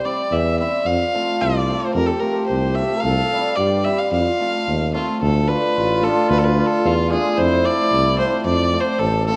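Soulful and bittersweet, this short klezmer excerpt moves at 111 BPM in a straight 2/4, its F major opening turning to D dorian sharp4 at 5.2 seconds. A biting, nasal violin with light vibrato and an airy bow carries the melody up front through an analog delay, while a soft-attack trombone plays a vintage second line. Shimmering hammered cimbalom rings beneath them, and a tuba with scooped notes enters at 0.3 seconds on bass. All of it sits in a wet recital hall with a dark production and vinyl crackle.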